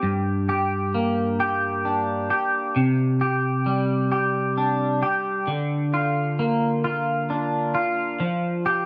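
Rock excerpt, brooding and cinematic, at 44 BPM in a straight 6/8, where a lone clean electric guitar plays solo from 0.0 to 8.9 s, its twangy, scooped, compressed tone sitting up front through analog chorus and tape echo over Gm, Csus2, Bb/D and Fsus2 in a build-up with light reverb and a dark production.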